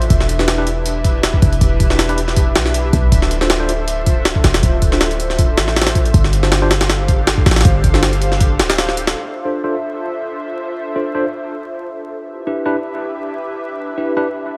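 Drum and bass with a jungle edge, raw and frenetic, this cut-off passage opens on a gritty, pitched-up sampler-style kit with a thumpy kick and high-tuned snare, sitting up front over a deep, boomy 808-style bass, both dropping out at about 9 seconds. Above them, an airy, breathy pad with chorus holds sustained chords through to 14.6 seconds, while a clean tine electric piano played through a combo amp adds tremolo-laden stabs with dub echo, entering at 0.4 seconds and taking a filter sweep once the drums and bass fall away. Light reverb, digital ambience and vinyl crackle colour the whole recording.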